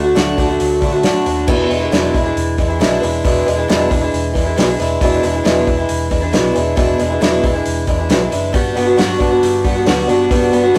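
Nostalgic and hopeful, this folk rock and heartland rock excerpt puts a bright, boxy, picked swing-style acoustic guitar up front with audible finger squeak over a round, amped hollow-body short-scale fingered electric bass and a dry, damped 70s drum kit with a fat snare, tight kick and dark cymbals, while a slightly broken-up, lo-fi electric guitar through a small old amp plays a compressed riff until 1.5 seconds and returns at 8.5 seconds, the whole take carrying a rough rehearsal-room character with warm saturation and moderate studio reverb.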